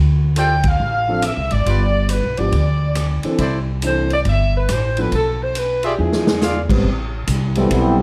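A woody pizzicato upright bass opens this energetic, swinging big band excerpt, sitting up front with a steel-string bite. At 0.4 seconds a tight, clear saxophone section takes the melody with vibrato, while a clear, present trumpet section adds ensemble stabs with light vibrato and the band lands an accent together. A natural-sounding drum kit in a big room drives the swing on ride, hi-hat, rim click, a medium-tuned snare, crash and a punchy kick, and it plays a fill at 6.0 seconds. A concert grand piano with a deep, open low end supplies accompaniment under the horns. A warm trombone section with light vibrato enters at 7.6 seconds to carry a second line into the closing passage, all set in light reverb.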